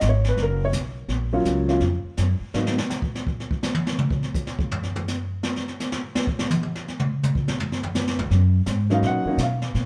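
Brushed drums on a jazz kit with a high-tuned snare and boomy kick take a solo from 2.5 to 8.3 seconds in this cool, smoky swinging jazz piano trio clip at 166 BPM in Eb minor, framed by a smooth, vintage grand piano over a rootless Ebm7 and a woody pizzicato upright bass, the bass returning as the harmony lands on Bmaj7 and the piano following shortly after, all played live together in a moderate stone room.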